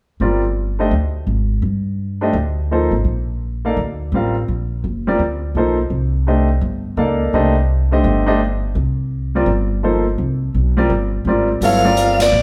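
Spiritual and intense, this fast modal jazz excerpt in G minor swings at 168 BPM. It opens with a clear, natural grand piano accompanying over Gm11 and Cm11 chords, while a woody, thumpy upright bass with gut strings plays pizzicato up front. At 11.6 seconds a growling, raspy soprano saxophone with vibrato and scooped notes enters for a brief solo, joined by a swinging big-band drum kit with dark cymbals, hi-hat, ride and snare, before a band accent at 12.2 seconds, the group playing live in one room with moderate large studio reverb.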